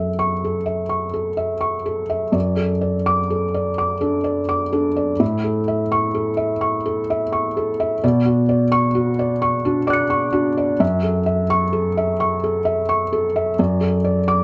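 Neoclassical minimalist piano in a rubato 6/8, intimate and melancholic, played by a solo felt-muted upright piano across the whole 14.4-second excerpt. The thick felt gives the tone a dark, mellow, vintage softness, with audible action noise sitting up front under close, detailed microphones and light reverb. The harmony drifts from F#m7 through D/F#, A and Bmadd9 before returning to F#m7, reaching D/F# at 13.6 seconds as the fragment cuts off.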